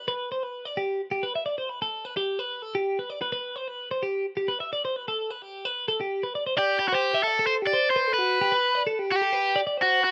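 Set in a straight 7/8 at 259 eighth-note beats per minute, this brief, wistful rock fragment in G major opens with a clean, twangy twelve-string electric guitar picking intricate arpeggios over a G chord. At 6.6 seconds a bright, overdriven electric guitar enters with a picked melody, sitting louder than the compressed twelve-string, and the harmony shifts to Gmaj7 at 8.2 seconds. The dry, rough home-demo sound keeps both guitars up front.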